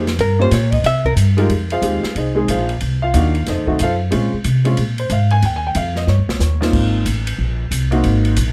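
A swinging 4/4 pulse at 183 BPM drives this short cut from a relaxed, sophisticated small-group jazz piece in F minor, with harmony moving from Gm7b5 through Fm9, F7b9 and Bbm9 to Ab69. A clean, compressed hollow-body guitar with plate reverb plays a brief picked melody from 0.2 to 1.1 s, while a slightly detuned, vintage upright piano accompanies and a thumpy, gut-strung pizzicato upright bass sits up front. The airy drum kit, with dark cymbals and a boomy kick, sits lower in the mix and adds a fill at 6.1 s, all captured by close, detailed microphones in light reverb.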